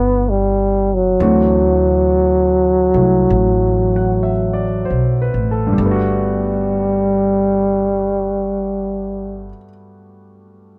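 A veiled, bucket-muted trombone sings a mellow, vibrato-laden solo melody with scooped notes over clear concert grand piano chords and a woody, thumpy pizzicato upright bass in this late-night, romantic jazz ballad fragment, which slows in its opening 5.8 seconds before settling onto a Gmaj9 chord, all captured with light reverb in a dry, close 1970s-style studio sound.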